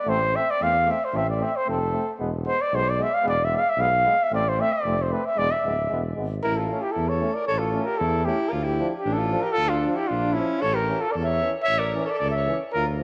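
Restless and bittersweet, this excerpt from a longer Balkan folk piece moves in a straight two-beat metre. A mellow trumpet carries the melody up front with vibrato and a soft attack, taking a solo over the opening 6.4 seconds. A smooth-topped tuba anchors the bass, also up front. Behind them sit a bright, distant trombone and a clear euphonium, both with light vibrato. At 6.4 seconds the music moves into a new section, and a present alto saxophone enters with a second line in a classical style. The whole ensemble sounds through a wet echo chamber reverb with a softened top end.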